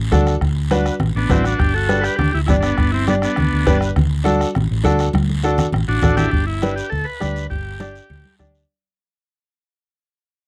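Festive and joyful, this fragment of a cumbia moves at a brisk 203 BPM in straight 4/4, rooted in G major and alternating between D and G chords. A dark, round hollow-body electric bass anchors the low end while a bright, woody upright piano sits up front with its action noise audible, giving the accompaniment an intimate, present character. The bombo thumps with a soft beater in a small-room sound, congas with hard hands and a thin skin play in the background, and a raspy, saturated guiro adds a faint scrape. A buzzy vintage combo organ carries the melody with a light vibrato, entering at 1.2 seconds, pausing, and returning at 5.9 seconds. A drum fill leads into a new section at 6.3 seconds, where the recording fades out, all captured with a dry, close 1970s-style studio sound.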